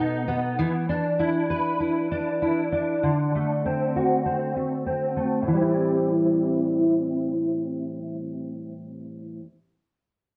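Indie pop with a wistful, mellow mood, this short cut from a longer piece features a solo fingerpicked steel-string acoustic guitar, a dark, full-bodied jumbo sitting up front and playing from 0.0 to 9.5 s over a lightly swung 4/4 feel. The guitar is coloured by ensemble chorus, a warbly pitch drift, a low-pass filter and slapback echo, with a filter sweep on it through the opening 5.5 seconds as the chords move from B7 through E5 to D7. At 5.5 s a new section settles onto Am7, all within a moderate studio reverb.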